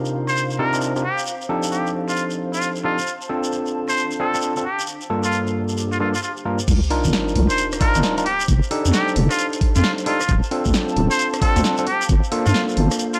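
A swung two-step garage groove carries this moody, late-night excerpt: a gritty, overdriven tine electric piano plays barky stabs with delay, a blurred granular cloud pad pumps in the background, and a close, grainy shekere ticks along. A nasal trumpet with a straight mute leads up front from 0.3 s with breathy, scooped, jazz-style phrases and light vibrato, its line echoed by delay. At the drop at 6.7 s, a sub drop impact arrives with a deep, dark wobble bass, a knocking electronic kick and a punchy analog drum machine, whose snare, hi-hat, rim click and crash are filtered and set in a large room, all over a light layer of vinyl crackle.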